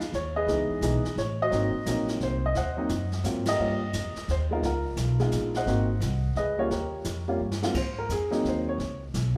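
The up-front upright piano leads this playful, sophisticated jazz piano trio excerpt, its warm, natural tone carrying the melody across a span from Ab2 to Gb5. It swings at 173 BPM in 3/4, centered on Ab mixolydian, with chords moving through Dbm7, Ab7, Eb, Db7 and Eb7, then returning to Ab7 before closing on Db7. An up-front pizzicato upright bass with steel strings gives a woody, growly, thumpy low end from Ab1 to Ab2. A brushed jazz kit sits further back, with dark cymbals, a medium-tuned snare and a boomy kick. The band hits an accent at 3.4 seconds, and the drums play a fill at 7.4 seconds that leads into a piano solo from 7.8 seconds. A moderate recital-hall reverb gives the trio the natural ambience of a church or concert hall.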